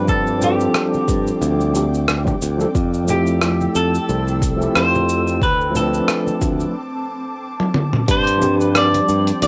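A clean, picked electric guitar carries the melody up front in this smooth, relaxed sunset chillout excerpt, its tone coloured by analog delay. Beneath it, an overdriven tine electric piano with medium tremolo plays accompaniment through a combo amp, while an ethereal, airy pad with ensemble chorus sustains mellow chords in the background over a slow-attack, long-release wash. A bright, growly fingered electric bass sits up front and direct, and a gritty, compressed sampler-style drum kit with cabasa, hi-hat, rim click and toms joins a deep, layered electronic kick from 0.1 seconds, both carrying cassette tape colour, with soft-handed congas tucked in the background. The groove moves at 90 BPM in 4/4 with a 16th-note swing, cycling through G7sus4, Fmaj9 and Dm7 before a break at 6.8 seconds and a drum fill that leads into a new section at 8.1 seconds, where the harmony returns to G7sus4 and the kick drops out shortly after, at 8.2 seconds. 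Light reverb and a home cassette recording give the whole mix a dusty, lo-fi glow.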